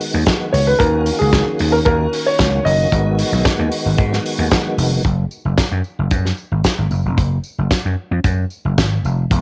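A straight, driving disco groove in 4/4 opens this sultry cut from a longer piece, carried by an acoustic soul drum kit with a fat snare, tight kick and hi-hat, mid-forward and rolled-off on top in a small room. A growly, punchy slap bass sits up front beside it, bright and amped, holding the low end through the whole clip. A tonewheel organ holds full, lightly overdriven chords with key click, chorus vibrato and a slow rotary speaker, moving between Abm7 and Ebm7 until it stops at 5.0 seconds. Over those chords a clear concert grand piano with deep bass and a natural tone plays the melody in plate reverb, from 0.5 to 4.5 seconds. Once the harmony drops away, the drums and bass carry on joined by a jingly, close and dry tambourine, all heard through the light reverb of a home recording on cassette.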